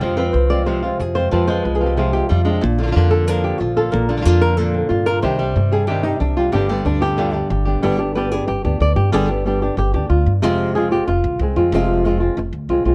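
The recording has a dark, warm production with light reverb, and the melody guitar and bass sit up front in this brief cut from a longer flamenco piece. The mood is intense and mournful, moving at a brisk straight pulse. A thumb-plucked acoustic flamenco guitar carries the melody throughout, its warm tone set in plate reverb, while a second, darker fingerpicked flamenco guitar adds stabs until 7.8 seconds. Underneath, a woody pizzicato upright bass holds the low end for the whole passage. The opening section features a nylon-string guitar solo over chords moving from Fm to Bb, Cmadd9 and G, and after a new section begins at 7.8 seconds, the harmony returns to Fm at 10.4 seconds.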